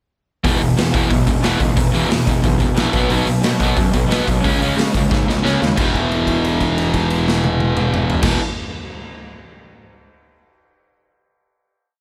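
Rowdy and energetic, this short punk rock piece in E major charges along at 180 BPM, with a distorted electric guitar, up front and compressed, playing palm-muted eighth notes alongside a lo-fi, overdriven garage guitar also chugging palm-muted eighth notes, while a growly, fuzzed bass drives eighth notes from the background and a raw garage drum kit pounds out a fast punk groove in a bright stone room, gritty and saturated, its boomy kick and medium-tuned snare pushed up front. The riff moves through E5, B5 and C#5 chords over light reverb before a drum fill at 5.1 seconds leads into a final held E5 chord that rings until 8.2 seconds.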